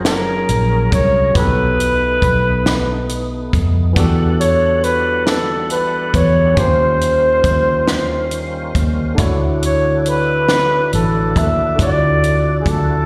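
A barky tine electric piano with light overdrive and slapback echo, a full tonewheel organ with overdrive, chorus vibrato and a slow rotary speaker, and a dark, round, foam-muted electric bass open this intimate, tender slow six-eight R&B excerpt, joined at 0.1 s by an up-front breathy flugelhorn melody with light vibrato, scooped notes, slapback and tape echo, and a dry compact cocktail kit with a high-tuned snare and punchy kick, heard as a live gig through the venue's PA with small room ambience and recital hall reverb.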